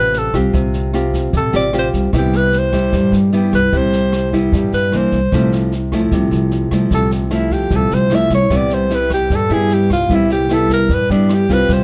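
Bossa nova with a relaxed, sunny mood, cut from a longer piece, led by a breathy alto saxophone soloing up front with a warm subtone, light vibrato and a smooth top over chords that move from Fadd9/A through Cmaj7, C9 and Fmaj7/C. A small-sounding, fingerpicked nylon-string guitar sits up front beside it, while a woody, growly pizzicato upright bass and a natural brush kit with a boomy kick, rim clicks and a medium-tuned snare carry the groove. A grainy, mellow tube shaker joins in the background at 5.3 seconds, and the close, detailed recording carries little reverb.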